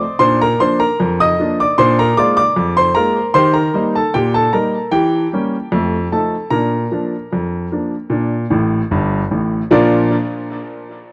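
Cheerful and playful, this short ragtime piano piece moves at an unhurried pace in a straight two-beat metre. A warm, natural baby grand carries it alone from the first moment to 10.2 seconds, sitting up front in the mix and spanning a broad register from deep bass to brilliant upper notes. Tape echo colours the piano, and a light reverb surrounds a dry, close sound that recalls a 1970s studio. The harmony passes from the home chord through a dominant seventh to its fourth chord, touches a diminished seventh, and resolves back home through a second dominant seventh. A grand piano fill arrives at 8.5 seconds, just before a new section begins at 9.7 seconds, as the cut from a longer piece draws to its close.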